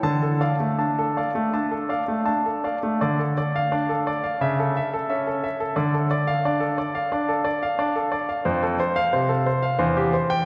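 Rubato 4/4 at 79-91 BPM carries this solemn, introspective baroque-style suite movement in D minor for solo grand piano, which sounds brilliant, intimate and polished with audible action noise and long sustain, sits up front across E2 to A5, and rings in a wet church reverb with a 3.7 s decay as the harmony moves from Dm through A/C# and F to C/E in this brief cut from a longer piece.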